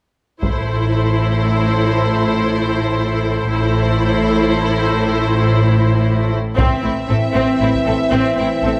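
Set in 12/8, this brief cut from a longer epic film score is relentless and dramatic in mood and anchored on one sustained chord. Bowed string sections carry the whole passage: the first violins sing the melody with a clear, intense vibrato that sits distant in the hall, while a focused second violin line moves beneath them. Violas sit up front with a smooth top, and lush cellos and double basses hold an even, rich low foundation from the background. A taiko ensemble struck with hard sticks opens at 0.4 seconds with a vintage, band-limited thump, then returns at 6.6 seconds as a dark, roomy French horn section enters with sustained chords. That second section builds toward the close at 8.8 seconds, all of it wrapped in a moderate scoring-stage reverb.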